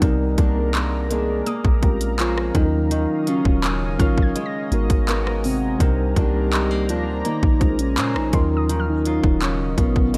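The recording sounds dry and gritty, with a digital ambience that gives this late-night contemporary R&B excerpt a close, hardware-captured feel and a mood of longing. A trap kit sits up front, its hard-clipped kick, crisp hi-hats, handclaps and rim clicks riding over a deep, round 808-style bass with a fast attack and dark decay. A mellow tine electric piano and a boxy, fingerpicked parlour steel-string guitar fill the middle, the guitar's arpeggios carrying audible finger squeak. The melody comes from a soft, full-bodied synth lead layered with a sub octave, colored by chorus, phaser, tape echo and vibrato. Softer than most of the other parts, a moody detuned sawtooth pad breathes with sidechain pumping and built-in reverb, and from 0.7 s a gentle pluck with a moving notch and tape echo glimmers in the background. The harmony cycles through minor ninth chords, Cm9, Bbm9, Ebm9 and Abm9, throughout the clip.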